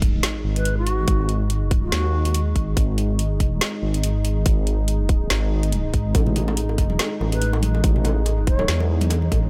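Heavy and brooding, this deep dubstep fragment moves at a half-time, swung pace, opening with a very quiet electronic impact over a dark analog pad with chorus and a deep, rumbling detuned saw bass that sits up front. A tight, layered electronic kick drives alongside a garage kit of woody snare and metallic hats, while a breathy, reedy low ney sounds from a distance with vibrato and dub echo at 0.6 s and again at 7.3 s. From 6.2 s, bright, saturated bongos and congas played with soft hands join in, also trailing dub echo, all in a dry, close sound.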